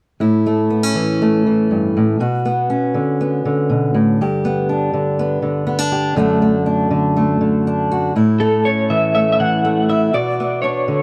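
Uplifting and nostalgic, this short cut from a longer indie folk piece with a building arrangement opens at 0.2 seconds on an up-front, concert-toned fingerpicked steel-string acoustic guitar, which carries the accompaniment through a straight 4/4 progression of A, Bmadd9, G and D/F#. At 8.4 seconds an electric guitar through a small old amp enters up front with a picked, slightly broken-up, compressed melody, colored by tremolo and tape echo. Light reverb and a dark, warm production frame both guitars.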